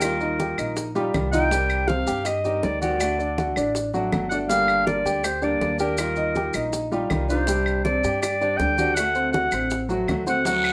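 A clear, punchy clarinet carries the melody up front from the start, sounding distant and roomy in a classical style, over a dark fingerpicked flamenco guitar, arpeggios from a deep-bassed concert grand piano, and a woody, growly pizzicato upright bass in this danceable, warm Cuban son and guajira piece at 161 BPM. Low-tuned congas with thick skins, round hard-hit bongos and woody claves sit in the background, while grainy, mellow maracas keep a close, dry pulse beneath the chord changes from Ebadd9 through Gm to D7. A raspy guiro enters only at 10.4 s, just before this excerpt, cut from a longer piece, breaks off.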